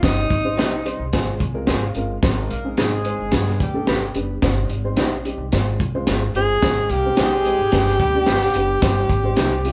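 Uplifting and warm, this uptempo 1960s-style soul cut opens with a breathy, whispered tenor saxophone out front, which drops away and returns at 6.4 seconds with scooped notes and an intimate, jazzy vibrato. Beneath it, a crunchy, gritty breakbeat kit with a punchy kick and high-tuned snare drives the groove alongside a woody pizzicato upright bass. A dark, boxy upright piano adds a fill at 0.6 seconds, a slightly broken-up electric guitar plays lo-fi stabs in the background, and a mellow, distant horn section enters at 2.5 seconds with a second line, all in a lightly reverberant room with the band playing live together.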